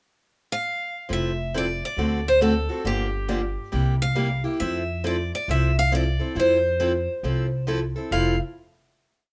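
A bright steel-string guitar opens this charming, playful jazz manouche piece at 0.5 s with a motif-based melody in F major at 137 BPM with a swung feel. At 1.1 s a boxy parlour guitar joins with four-to-the-bar chords, short and accented on two and four, and a woody, thumpy pizzicato upright bass plays two-beat root and fifth, both up front with audible finger squeak on the guitars, as the light reverb carries an Fmaj7, D7, Gm7, C7 turn back to Fmaj7 and a final chord ending at 9.3 s.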